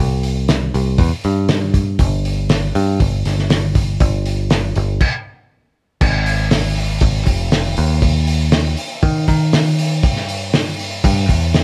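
A cloth-damped drum kit plays through this hopeful, open-road folk rock and heartland rock passage, its thuddy, muffled sound carrying dark cymbals, a fat snare, a tight kick and a gritty, saturated edge from a small room, entering at 0.2 seconds. Beside it, a picked electric bass sits up front with a direct, punchy tone, moving at a steady 119 BPM in a straight 4/4. Recorded dry, the band breaks off in a stop from 5.0 to 6.0 seconds before a new section begins, and the clip is cut from a longer piece.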